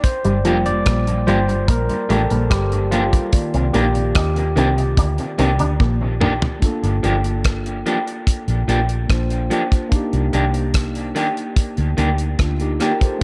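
Bittersweet and smooth, this lovers rock reggae excerpt opens with a barky, overdriven tine electric piano soloing through dub echo over a damped 70s drum kit with a tight kick, a round, foam-muted fingered bass, picked stabs from a slightly broken-up guitar through a small old amp, a clean envelope-filtered guitar riff drifting in the background until 6.0 seconds, and a very quiet tonewheel organ turning on a slow rotary speaker, with a drum fill at 5.8 seconds leading into the second half, all in a dark, small-room production.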